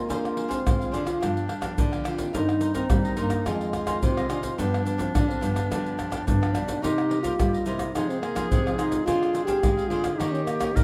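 A samba and choro piece in C minor at 107 BPM in a straight 4/4, this short excerpt cut from a longer work carries a festive, sunny mood. A mellow French horn with light vibrato and a soft attack sings the melody from a distant, roomy spot, while a breathy clarinet with scooped notes and a smooth top weaves a jazz-styled second line just above it. A bright, crisp cavaquinho is picked alongside a fingerpicked nylon-string guitar with fresh strings, and a second full-bodied nylon-string guitar carries the bass in the background. Up front, a tube shaker, pandeiro and tamborim play together with a deep surdo, all heard in a small room. The harmony moves through Dm7b5, G7, Cm7/G and Fm7 before closing on Eb7 at 10.2 seconds, and a moderate large-studio reverb gives the ensemble a spacious glow.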